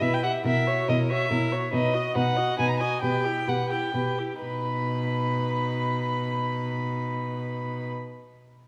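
A quick classical-period movement for string quartet in B major and 3/4, cheerful and spirited, moving between 122 and 143 BPM with a rubato feel. It is cut from a longer piece, and all four bowed parts play throughout its 7.9 seconds in period style with gut strings. The first violin carries the melody with a dark, nasal tone that sits up front yet sounds distant, while the second violin adds a supporting line with a warm tone and a smooth top. Beneath them the viola fills in the accompaniment with a light vibrato, and the cello anchors the bass on a low B, close and up front with a rich, reedy sound. The harmony moves from F#7/B through B and Em/B before settling on B at 4.4 seconds, where a second section begins after the tempo slows between 1.1 and 4.4 seconds. A wet scoring-stage reverb with a 1.7-second decay surrounds the ensemble.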